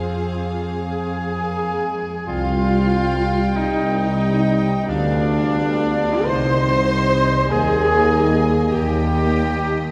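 A slow, yearning and solemn orchestral movement in C minor opens at 0.0 s with the string sections together: violins carry a melody and a second line, violas and cellos fill the accompaniment and bass with a rich, bowed vibrato, and a bright double bass section sounds lush and distant beneath them. The tempo sits around 41-50 dotted-quarter beats per minute in a flexible, rubato 6/8, moving from F minor toward C minor. At 0.9 s a punchy oboe, an airy, hollow flute and a trumpet playing background stabs join in. At 2.3 s the harmony turns to C minor as a clear clarinet, a smooth bassoon, a very quiet, roomy trombone section, a tight French horn section holding sustained chords and a mellow tuba on the bass line all enter. The chords then pass through G7 over D, back to C minor and on to E-flat as this fragment of a longer work ends. The whole ensemble is heard from further back in a wet concert hall, giving it a solemn, spacious glow.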